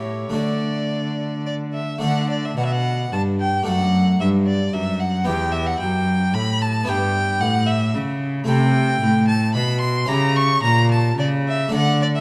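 A rich, smooth violin carries the melody up front with even vibrato, singing in its high register over a baroque-style sonata movement in D major that moves at 111 BPM in a dance-like 3/4 with a radiant mood. A clear, focused cello grounds the bass with its own vibrato, while a close-miked, dry Flemish-style harpsichord with two sets of strings fills in full plucked chords, the harmony passing through Em and Am7 before a C#dim7 at 10.1 seconds. The dark production sits in a recital hall reverb, and the excerpt is cut from a longer piece.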